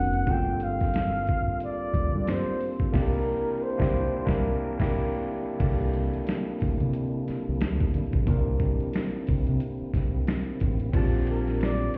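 A swung 90 BPM groove in 4/4 drives this sensual neo-soul and R&B passage, cut from a longer piece, with a gritty, pitched-down boom bap sampler kit of thumpy kick, medium-tuned snare, hi-hat, ride and crash up front beside a round, dark fingered dub bass, while an overdriven tine electric piano through a combo amp plays over Gm9, C9 and Bb69 chords and a fat, slow-rotary tonewheel organ with key click and chorus vibrato holds chords in the background. A breathy, whispered flugelhorn carries the melody in a close, intimate jazz style with scooped notes and vibrato, playing through a band accent from 2.9 seconds, stopping at 5.3 seconds and returning at 11.3 seconds. The mix sounds muffled, as if heard through a wall, in a stone room with light reverb.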